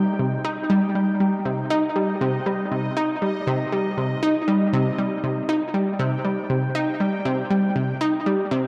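A straight 4/4 pulse drives this cosmic, mysterious fragment of ambient, sequencer-driven space music: a round, detuned sawtooth analog pluck with a fast attack and decaying filter pluck sits up front playing a riff through chorus and analog delay, while a resonant, bubbling stepped-filter texture with random filter steps, slow attack and long release floats further back with chorus and its own built-in reverb, the whole echo-heavy mix soaked in wet spring reverb.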